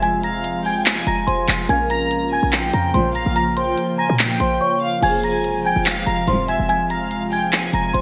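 A bright 1980s-style digital production sits in a lush hall reverb over a small room ambience, framing this brooding, eerie trap excerpt in F minor at 144 BPM with a half-time feel. A delicate, bell-like celesta carries the melody, while a mellow, thumb-plucked concert harp rings in the background and a warbly, nostalgic tape-like pad holds detuned, lo-fi chords with chorus and its own reverb. The trap drum kit is up front, with crisp hats, handclaps and crash cymbal wrapped in gated reverb, and a punchy, tight 808-style bass decays beneath it. A violin section with a reedy, gut-string tone and light vibrato adds a close, delayed second line, and a dark string section in the low register drops in for brief bowed stabs at 2.9 and 6.3 seconds. The harmony moves from Fm to Bbm and back, with a short break at 4.6 seconds before the opening section returns.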